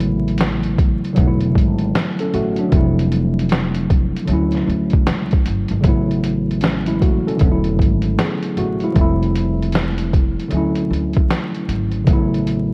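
Worn, warbling cassette tape with vinyl crackle, drifting pitch and light digital reverb frames this dreamy, nostalgic lo-fi hip hop excerpt at 77 BPM in A major, where an up-front, muffled, pitched-down sampler drum kit with a thumpy kick and medium-tuned snare swings its 16ths alongside a woody, growly pizzicato upright bass and a slightly out-of-tune, lightly overdriven tine electric piano cycling through A69, E7sus4, Fmaj7 and Dmaj9 for the full 12.7 seconds.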